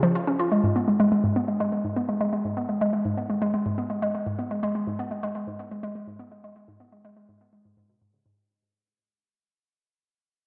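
In a straight 4/4 pulse, this expansive, cosmic ambient fragment is carried by a single square-wave pluck playing solo from 0.0 to 8.3 seconds, its sound bouncy and warbling with a vintage, noisy edge and a fast attack that quickly decays. The pluck sits up front, thickened by chorus and delay, while a wet spring reverb and an echo-heavy mix open a deep sense of space around it. A fade-out runs from 0.6 to 8.4 seconds.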